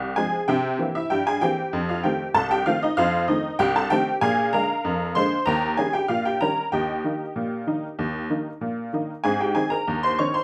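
A detuned, jangly honky-tonk upright piano plays solo and up front in this cheerful, jaunty ragtime fragment in a straight 2/4, its bright, short-sustained vintage tone set in light reverb within a dark, warm production as it spans C2 to Db6 and moves through C7, F7, Bb7 and Eb7 before landing on Ab as a new section opens at 9.2 s.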